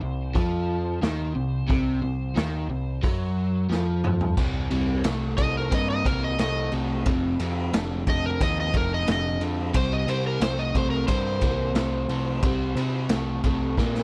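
A dark, overdriven slide guitar played with fingerpicks carries the melody through tape echo, taking a solo from 4.4 seconds until it drops out at 13.1 seconds in this gritty, brooding blues rock and southern rock power-trio fragment at 89 BPM in C minor. Beneath it, a double-tracked, compressed electric guitar riff and a growling, overdriven picked bass sit up front, moving from C minor to C and F power chords. A raw garage drum kit enters at 0.4 seconds with a boomy kick, saturated, pumping small-room sound and a rolled-off top, adding fills before the solo and near the close, all with little reverb.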